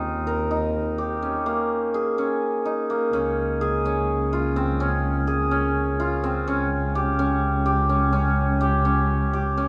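In a straight 7/8 at 252 BPM counted in eighths, this hopeful, restless slice of contemporary chamber music in Db lydian, cut from a longer piece and tuned to A4 = 439 Hz, sets a bright, shimmering hammered dulcimer playing ringing arpeggios up front against a single bowed double bass with a rich, smooth vibrato, both sounding throughout in a moderate recital hall reverb as the chords pass from Eb to Absus2 and to Dbmaj7 at 3.1 seconds before the harmony drops away at 6.5 seconds.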